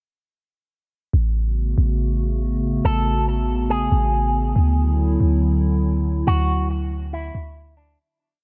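A warbling, detuned tape-like pad holds sustained A69 and D69 chords over long, boomy 808-style sub-bass notes from 1.1 seconds, while a bright, twangy electric guitar with an envelope filter and digital delay enters at 2.8 seconds with a sparse melody repeated like a sampled loop, giving this floating, dreamy half-time cloud-rap piece at 140 BPM in A major a nostalgic lo-fi haze before it fades out from 6.3 seconds.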